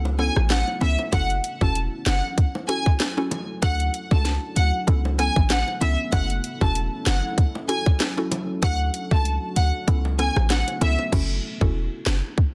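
Tough and bouncy, this dancehall cut moves at 96 BPM in F# minor with a swung 16th feel, pairing an up-front electronic drum kit of tight kick, sharp snare, hats, rim clicks, handclaps and crash with a punchy, short 808-style bass. A woody, mallet-like synth pluck with chorus and phaser outlines the Aadd9, F#m7 and D changes, and a lush symphonic violin section carries the high melody with vibrato and digital delay from 0.2 seconds. Beneath them sit a deep, moody ambient pad with sidechain pumping and low-tuned bongos, all in a dry, dense, heavily limited master.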